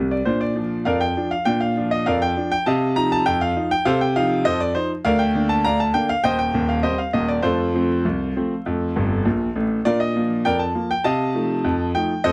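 A clear concert grand piano carries this playful, jaunty ragtime excerpt on its own. It moves at 100 BPM in a straight 2/4 in Bb major, with deep bass and a smooth, vintage tone sitting up front, plus a fill between 8.9 and 9.9 seconds. Light reverb and vinyl crackle frame the short passage as the chords move from Bb through F7, Bb/D and Cm/Eb before resolving back to Bb.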